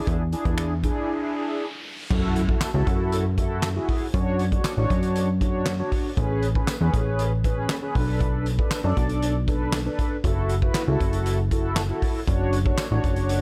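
Confident yet bittersweet, this dance-pop excerpt in F# minor moves at 118 BPM with a straight 4/4 feel, opening on mellow, brassy synth chords with chorus and sidechain pumping over a punchy, funky analog bass and a loose acoustic drum kit with a fat snare, punchy kick, dark cymbals, finger snaps and handclaps, while a background riser and impact mark a short break before the shift at 2.1 seconds, after which a very quiet jingly tambourine joins at 2.6 seconds and the chords run from F#m7 through Dmaj7, Amaj9 and Bm7 in a small room.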